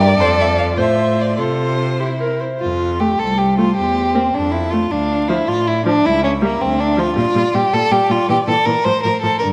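In a rubato 6/8, this graceful, spirited classical-period string quartet fragment sets a background violin melody over a focused, up-front second violin line, a vibrato-rich viola accompaniment and an intense cello bass, all bowed by single players and heard through dark, crackly vinyl with a lush scoring-stage reverb.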